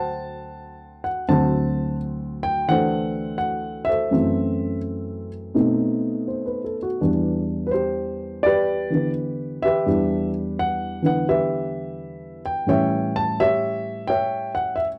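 Sophisticated and warm, this solo jazz piece is cut from a longer performance and moves with a rubato swing feel in 4/4. A dark, mellow baby grand plays alone throughout, sitting up front with an intimate, natural tone, short sustain and audible action noise, ranging from D2 to A5. The dry, close 1970s-style studio sound carries light reverb as the harmony travels from D7 through B7b9 and Em7 to A7 at 12.7 seconds.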